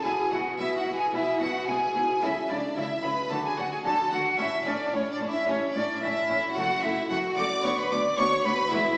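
A festive, lively baroque-style concerto movement in A major at 111 BPM opens with a pure, crisp-attacked silver flute and a rich, vibrato-laden violin section sharing the melody, while a second violin section carries a close, expressive line beneath. A very quiet, brilliant Italian-style harpsichord, dry and close-miked, fills in the accompaniment beside a lush viola section in the background, and a warm cello section pairs with a dark, soft-attacked double bass section with portamento to anchor the bass. The recording sits in a reverberant recital hall but comes across with a small-speaker sound; the viola, cello and bass sections stop at 8.8 seconds, just before the violins, flute and harpsichord finish at 9.0 seconds.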